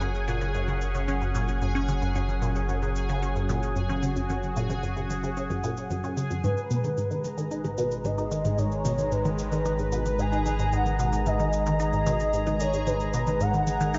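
A squelchy, resonant blip pluck stands out in this hypnotic piece of sequencer-driven space music, cycling through a riff colored by phaser and delay over a straight 4/4 pulse. Beneath it, an airy sweeping pad holds sustained chords with chorus and fades in across the whole passage, while a round, deep analog bass anchors the low end. A bubbling stepped-filter texture adds random resonant flickers bathed in chorus and its own reverb, and overdriven electronic shaker and toms, re-recorded in a small room and treated with delay, fade in quietly from the start. At 6.4 seconds an expressive synth lead enters with ensemble chorus, vibrato and delay, as the harmony moves from F#add9 to G#m7. A moderate plate reverb gives the mysterious mood depth, and the dark, softened top end keeps the sound hazy in this fragment cut from a longer piece.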